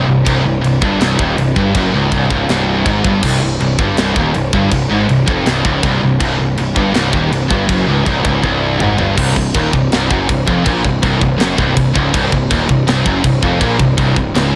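A scooped, high-gain guitar sits up front from the opening moment, bright and distorted, grinding out a low riff alongside a crunchy, double-tracked overdriven guitar and a dark, sludgy third guitar tucked in the background. Beneath them a fuzz-laden picked bass adds a growly, bright edge from its amp and direct signal, holding down the bottom of this aggressive, relentless heavy metal passage in a straight 4/4. A tight acoustic drum kit enters at 0.3 s, sitting mid-forward in a studio room with a tight kick, a medium-tuned snare, toms, crash and china cymbals. A drum fill from 8.4 s leads into a new section at 9.2 s, where the harmony shifts from C minor to C phrygian. The whole cut, lifted from a longer piece, is wrapped in a small room ambience.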